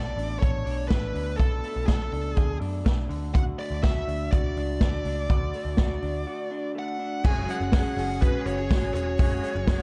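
A restless, bittersweet jangly indie pop excerpt in B dorian at 123 BPM opens with a dark, distorted high-gain lead guitar melody through analog delay over slightly broken-up, lo-fi arpeggios from an electric guitar through a small old amp and a round, foam-muted picked bass, joined at 0.2 seconds by an up-front vintage drum kit with a punchy kick and rolled-off top, moving from Bm7 to D before a break at 6.3 seconds, then at 7.2 seconds a reedy combo organ with heavy vibrato, a shimmering, octave-doubled twelve-string acoustic guitar and a lush, distant violin section arrive over F#sus2, all in a dark, warm, dry production.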